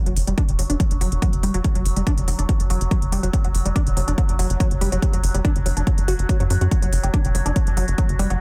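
A heavy, overdriven kick drum sits up front from 0.4 s in this intense, dark excerpt of driving peak-time techno at 142 BPM in a straight 4/4, anchoring a punchy sawtooth-and-square sequencer bass ranging from E1 to F#2. Above it, a tight, detuned synth riff between F#3 and F#4 gets chorus, phaser, overdrive and dub echo, while smooth, overdriven electronic hi-hats tick throughout. A wave-folded, resonant drone holds F#3 with moving overtones, chorus, phaser and its own reverb, and sidechain pumping runs through the drone, riff, bass and hats in a dense, heavily limited mix with little room sound.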